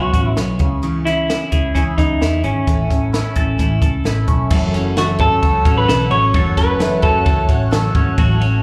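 A clean, up-front semi-hollow guitar carries the melody with slapback echo in this bittersweet, restless slice of jangly indie pop, backed by a full-bodied picked dreadnought acoustic and a twangy electric playing arpeggios through phaser, slapback and tape echo. A round, foam-muted vintage bass and a compact cocktail kit with a punchy kick, high-tuned snare and dark cymbals drive the straight 4/4 groove, all heard with the light club reverb of a live gig through the venue's PA. Around 4.8 seconds a hollow, warbling square-wave pad with ensemble chorus drifts in behind, and at 5.0 seconds a breathy, whispered trumpet adds a soft second line in the background.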